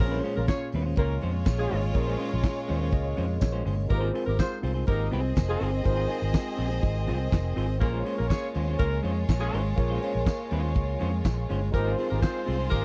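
Glamorous and sultry, this disco excerpt moves at 123 BPM in a straight 4/4 feel, set in Bb minor and swaying between Bbm9 and Ab6 chords. Up front, a damped 70s drum kit with a fat snare, tight kick, hi-hat and handclaps sits dark and smooth with a rolled-off top, joined by a round, amped fingered electric bass. A semi-hollow electric guitar adds clean, hollow-bodied accompaniment, while a horn section punches out tight, smooth-topped stabs with octave doubling and vibrato. In the background, a barky tine electric piano comes through a combo amp with light overdrive and lush chorus, adding a fill from 2.4 to 3.9 seconds. A clear, intense violin section carries a second line with light vibrato from 1.0 seconds, and a jingly, distant tambourine shimmers faintly behind everything else in a dry, close 1970s-style studio sound.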